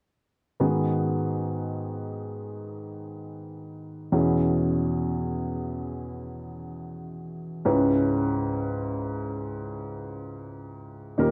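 A dark, woody upright piano sits up front in this short, melancholic pop fragment, playing mellow, vintage-toned accompaniment from 0.6 to 11.3 seconds that moves through G#m7, E6 and C#m7, softened by a moderate plate reverb in a warm, emotional production.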